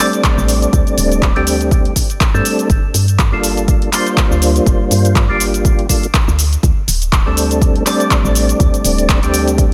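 Moody and warm, this deep house excerpt rides a swung groove built on up-front organ stabs: a mellow, round tonewheel sound with third-harmonic percussion, chorus vibrato, a slow rotary speaker, delay and sidechain pumping, moving between D7sus4 and Gm9 chords. Overdriven handclaps, hi-hat and shaker play from the start, and a deep, tape-toned electronic kick, re-recorded in a small room, enters at 0.2 seconds. A dark, woody FM bass with a fast attack and tube saturation joins at 0.4 seconds, also pumping, while a digital ambience surrounds the mix.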